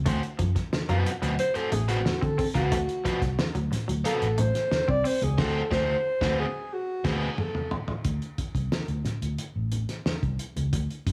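Strutting and funky, this straight 90 BPM funk groove in D mixolydian is cut from a longer piece and rests on a D6 chord before moving to D7(no3) at 8.1 seconds. A round, foam-muted vintage fingered electric bass runs throughout, while a cloth-damped drum kit sits up front with a fat snare, tight kick, dark cymbals and a gritty, muffled, lo-fi character. Low-tuned congas with a thick-skinned, soft-handed sound add percussion in the background. A biting, overdriven guitar plays bright picked accompaniment, and a clean semi-hollow electric guitar adds a hollow-bodied riff further back in the mix before dropping out. The breathy alto saxophone takes a jazz-style solo up front from 1.4 seconds, and the band hits accents from 5.4 seconds before a drum fill arrives at 6.7 seconds. A light small-room reverb surrounds the recording.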